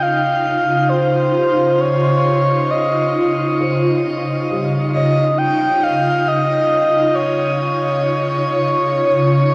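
A straight, unhurried 4/4 pulse carries this weightless, luminous ambient fragment, cut from a longer piece and resting on a Dbadd9 chord across its 9.5 seconds. Up front, a breathy, flute-like synth lead with vibrato, chorus and a diffuse delay carries the melody over an ethereal, detuned pad of sustained chords coloured by ensemble chorus and phaser. Beneath them, a very quiet felt-muted upright piano traces dark, boxy arpeggios with audible action noise, all set in a shimmering reverb with an 8.0 s tail and a worn, warbling cassette-tape quality that lets the pitch drift.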